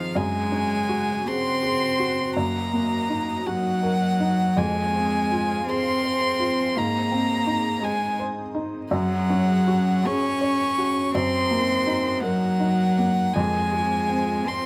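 Longing and melancholic, this short neoclassical passage for piano and strings drifts in a rubato 6/8 and is cut from a longer piece. Across all 14.7 seconds, a single violin carries the melody up front, its bow sul tasto with a soft attack, light vibrato and a touch of plate reverb. Beneath it, one cello sings a close, rich second line, pure and floating in its airy tone. A felt-muted upright piano supplies mellow, intimate accompaniment with short sustain and audible action noise. In the background, a breathy synth pad of detuned sawtooth and triangle tones with a noise layer holds slow-blooming chords, colored by chorus and phaser. The harmony circles through Gbsus2, Ebm/Gb, Fm and Abadd9 inside a moderate studio room.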